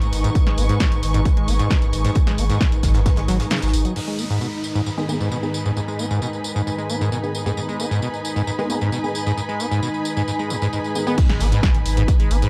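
A straight 4/4 pulse drives this hypnotic, industrial slice of peak-time techno, built on a heavy, up-front electronic kick, a pumping techno drum kit with a punchy snare, hats, tambourine and crash, and a very quiet, loose acoustic indie kit underneath. A thick, saturated sine sub bass and a squelchy, resonant sawtooth acid riff with filter sweeps, subtle chorus and dub echo both pump to the sidechain. Meanwhile a moody, detuned pad drone with chorus and a slow attack sits in the background. Distant, woody bowed strings with vibrato add a lush symphonic texture throughout. The kick drops out by 3.5 seconds as a downlifter and swell carry the middle, and aggressive, bright rave stabs with reverb and dub echo enter in the background at 5.0 seconds. At 11.2 seconds an impact marks the drop, bringing back the kick, sub bass and indie kit in a dark, warm mix with light digital ambience.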